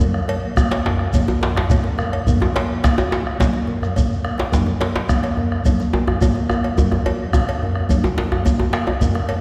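A djembe and a grainy, mellow shekere open this short cut from a longer West African traditional drum ensemble piece, with the deep, dark bombo and the congas joining almost at once. The mood is powerful and driving, carried in a straight 4/4 feel. A metallic cowbell arrives moments later, and a second djembe comes in at 0.6 seconds. Both djembes sound tight and cracking, one compressed and saturated, the other set in a small room. The bombo sits up front with a live-room character, while the bright, high-tuned congas with their thin skins sound distant in a large space, and the shekere and cowbell stay close and dry. A brief drum fill at 4.1 seconds marks the middle of the passage, and the ensemble is heard from further back in a concert hall with a long, wet reverb.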